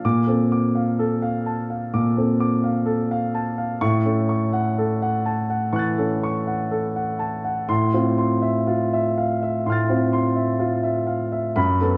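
Classical impressionist solo piano, hazy and serene, unfolds in a free, rubato 4/4 across this 12-second fragment of a longer piece. A single concert grand sits up front with a warm, open tone, deep bass and long sustain, spanning F#2 to A6 as the harmony drifts from Dm7/Bb through A6 to Fmaj7/A. A wet recital hall reverb and a dark, warm production wrap the sound in a soft glow.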